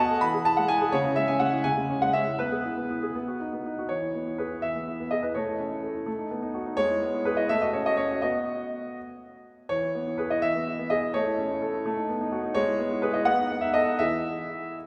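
A lilting six-eight pulse, pushed and pulled by rubato, carries this short excerpt from a classical-period piano sonatina, its mood elegant yet restless. A solo concert grand plays throughout, sounding clear and open, with a deep bass, long sustain and an up-front presence. The harmony moves through simple cadential steps, arriving on the dominant before a second section begins at 3.9 seconds and circles twice through a similar progression before closing on the tonic at 14.0 seconds. The piano is tuned slightly below standard pitch, at A4 = 438 Hz. A wet concert hall reverb with a long tail surrounds the instrument, giving the recording the spacious feel of a church or hall.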